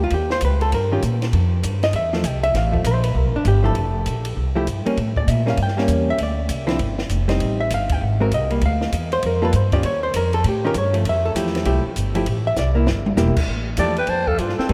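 A dark, clean hollow-body electric guitar and a woody pizzicato upright bass open this swinging, sophisticated small-group jazz excerpt, joined by a compact cocktail drum kit with dark cymbals, a high-tuned snare and a punchy kick. The kit plays a fill at 12.6 seconds, before a raspy, growling alto saxophone and a distant, mellow trumpet with light vibrato enter at 13.8 seconds, all set in a vast, echoing space.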